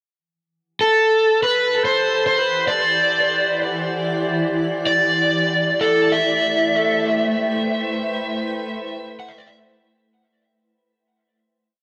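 An overdriven slide guitar sits up front from 0.8 seconds, playing a dark, motif-based melody of call phrases through dub echo. A cloudy granular pad arrives at 2.2 seconds, holding slow-attack chords that blur and evolve as they move from Em9 to Am7. The whole ambient piece is steeped in a huge, wet reverb that gives it a hazy, spacious mood before the fade-out starting at 6.8 seconds.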